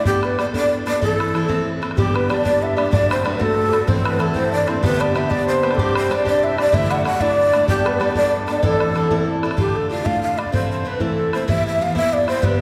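A dark, wild Celtic folk jig in 6/8, where a breathy, hollow shakuhachi leads the melody up front over a full-bodied picked steel-string guitar with audible finger squeak, an airy wooden flute sits in the background as a second line, a boomy bodhran drives the rhythm, and a shimmering hammered dulcimer joins at 2.0 seconds, all bathed in the long reverb of a church.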